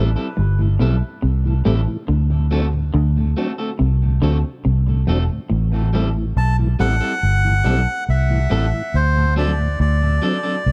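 Reggae at 70 BPM in A dorian, meditative and hypnotic, cut from a longer piece, where a dark, punchy, foam-muted vintage fingered bass sits up front under a slightly broken-up picked electric guitar with dub echo, a mellow tonewheel organ with chorus vibrato and slow rotary speaker in the background, and a very quiet clean picked guitar riff that stops at 5.8 s, before a reedy, breathy melodica with dub echo takes the melody from 6.4 s over Am7 and D7 in a dry room.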